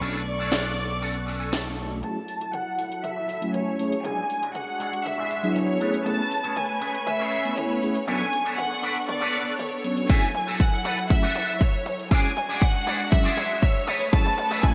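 Groovy and cosmic, this nu-disco excerpt at 119 BPM in F# minor sets an up-front, vibrato-rich violin section carrying the melody through low-pass filtering and delay over chorused, sidechain-pumped mellow synth brass, sustained bowed string chords, a twangy envelope-filtered guitar riff with fills, a punchy slap bass heard only until 2.0 s, a house kit with cracking snare and metallic hats under gated reverb, and a punchy electronic kick arriving at 10.1 s, all within a bright 1980s-style digital production as filter sweeps and a drum fill drive a build-up over chords moving from Bm9 through F#m7, E7 and Amaj9.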